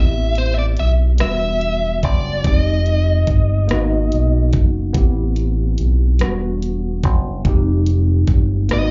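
Heard live through a club's PA with a dull, muffled top and a touch of room reverb, this sultry, late-night slow R&B excerpt sways in six-eight over moody minor-ninth chords. A deep, round dub bass played with the fingers sits punchy and up front beside a produced electronic kit of knocking kick, warm hats and rim clicks that comes in at 0.4 seconds, while a worn, slightly out-of-tune tine electric piano adds lightly overdriven accompaniment through its built-in speakers. A biting, picked electric lead guitar with overdrive and slapback echo carries the melody until 4.5 seconds, then returns briefly at 8.7 seconds.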